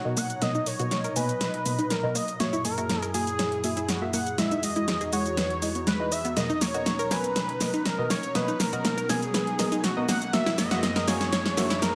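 This progressive house excerpt feels hopeful and euphoric, moving in a straight 4/4 groove through a build-up that cycles between major-seventh and dominant-seventh chords. A thick, bold unison lead carries the melody with vibrato, its detuned sawtooth tone roughened by vintage 12-bit sampler grit and trailed by delay. Beneath it, an airy, breathy pad holds sustained chords with a slow attack and long release. A deep, mellow chord stab and a round analog pluck, the latter sitting in the background, are both treated with chorus and delay and shaped by filter sweeps as the build-up unfolds. The big-room dance drum kit sits up front with a huge snare, metallic hi-hats and shaker, playing a fill that runs through the whole passage. A very quiet electronic riser enters at 8.2 seconds, and a moderate digital room reverb lends a sheen of ambience to the mix.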